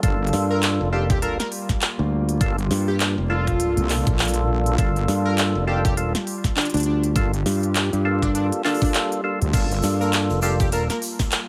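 Glitch hop at 101 BPM in G minor, this funky, swaggering excerpt from a longer piece rides a swung 16th-note feel over a single Gm7 chord, with vinyl crackle and light reverb over the whole mix. Up front, a knocking electronic kick and a layered pop drum kit with a fat snare, crisp hi-hats, handclaps and crash cymbal drive the groove. Two basses share the low end: a heavy, saturated wobble bass with a detuned sawtooth-and-sine tone and chorus, and a bright, direct fingered electric bass that enters at 0.3 seconds. A lightly overdriven tonewheel organ plays percussive stabs through a slow rotary speaker, with 12-bit sampler grit, dub echo and sidechain pumping. A catchy, punchy unison lead with a filter pluck and lush chorus joins at 0.5 seconds, while a dark, warbling, nostalgic pad holds sustained chords in the background. A grainy, distant egg shaker slips in at 9.5 seconds.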